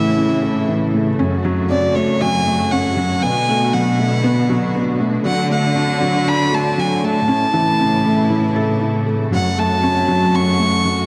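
A dark, hall-reverberant mix frames this hypnotic, moving piano and strings electronica, cut from a longer piece at 118 BPM in F# minor, where an up-front, airy-bowed solo violin carries a pure, floating melody bathed in shimmer reverb over a mellow, intimate felt-muted upright piano riff with shimmer and tape echo, soft sul tasto string-section chords in the background, and an earthy, distant cello section with tube saturation holding the bass as the chords move through A, F#m, Bm7 and D.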